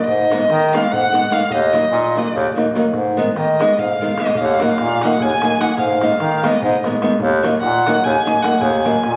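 Set in a driving 7/8 at 295 BPM counted in eighths with a straight feel, this fiery, virtuosic piece of Balkan wedding-band folk sits in Eb harmonic minor, its chords alternating between Abm and Ebm. A dark, bowed violin carries the melody as a solo from 0.0 seconds to the close, one player with a smooth, even tone and vibrato. Beneath it, a clear bass clarinet in a classical style holds the low line up front, while a fingerpicked acoustic flamenco guitar supplies accompaniment with audible finger squeak. A clay-shelled darbuka with natural skin sits further back, played with soft hands, and adds a short fill from 3.9 to 4.4 seconds. The sound has the live ambience of a recital hall heard through a phone in the room, carrying a wet, club-like reverb, and the clip is cut from a longer performance.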